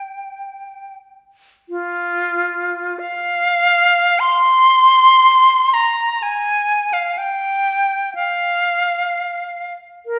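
A wet recital-hall reverb with a 1.4-second decay surrounds this short classical passage, cut from a longer work, in which a solo silver concert flute plays for 10.2 seconds. In free time and F minor, tuned to A4 = 442 Hz, the mood is meditative and lonely. Set up front, the flute has an airy, metallic tone with vibrato and soft attacks, ranging from F4 to C6, and a brief opening phrase gives way to a longer second section at 1.7 seconds.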